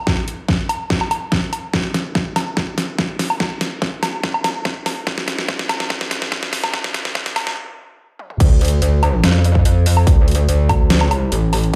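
A half-time 4/4 pulse at 144 BPM drives this chaotic, heavy wobble dubstep fragment in D minor, cut from a longer piece. A punchy, overdriven electronic kick, re-recorded in a small room, anchors a layered dubstep kit with a deep snare, bright hats, crash cymbal, toms and woodblock, the kit pushed up front with overdrive of its own. The opening build-up runs on a drum fill under a filter sweep, then breaks for a stop at 7.6 seconds before the drop lands at 8.4 seconds. There the metallic wobble bass arrives, an aggressive FM and sine tone with a fast attack, sustained, saturated and compressed, with chorus and overdrive, spanning A1 to F2 at the front of the mix. The whole sits in a moderate plate reverb and a large studio space, sounding as if played on a big sound system in a bare room, with a high-pass filter thinning the lowest edge.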